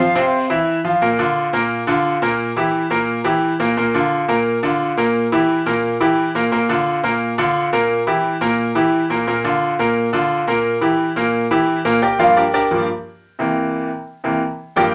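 A brief, pure concert flute note with vibrato and a crisp attack sounds distantly in the background at the start, then drops out by 0.6 seconds, opening this sunny, festive Latin passage at a brisk 175 BPM in straight 4/4. Up front, a brilliant, slightly worn grand piano carries the accompaniment with deep bass and audible action noise, rocking between Bb and Edim/Bb in an intimate small room. From 12.0 seconds the piano plays solo over Gm7 and C7 before the cut.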